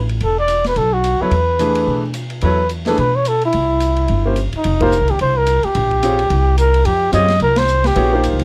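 A breathy, dark trumpet with vibrato and scooped notes leads this searching, spiritual modal jazz excerpt at 217 BPM with a swing feel, over woody pizzicato upright bass and a smooth drum kit with a boomy kick, joined at 1.2 s by a clear grand piano with audible action noise, as the band hits accents at 4.8 and 7.5 s while the harmony settles into F minor, in a close, detailed recording with light reverb.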